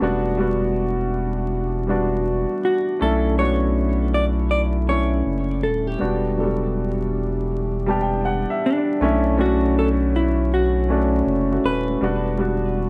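A dusky, vintage-tinged hip hop production sits in a small room with a moderate reverb, dressed in vinyl crackle and a dark, hazy glow. The mood is reflective and unhurried, with a swung 4/4 feel, and the harmony alternates between Em9 and Bm11 across this cut from a longer piece. Up front, a woody upright piano filtered to a smooth, muted tone carries the accompaniment, while a thick, saturated sine sub bass sits beside it with a fast attack and sustained notes. Behind them, a close-miked French horn section holds tight, mellow chords with light vibrato in a classical style, softened by a low-pass filter. At 2.6 seconds a clean, fingered hollow-body electric jazz guitar enters with the melody, its filtered tone trailed by tape echo.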